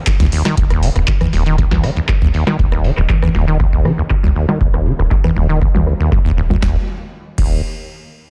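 A dense, heavily limited mix with light digital ambience carries this raw, hypnotic acid house excerpt at 119 BPM, where a squelchy, resonant sawtooth acid riff with tube saturation and sidechain pumping sits up front over a deep, tape-warm electronic kick re-recorded in a large room, an overdriven analog drum machine of crisp snare, metallic hats, congas, handclaps, rim clicks and crash cymbal, and a round, detuned, dark analog bass pumping in the background, while filter sweeps on the drum machine and the acid line run until 6.6 seconds.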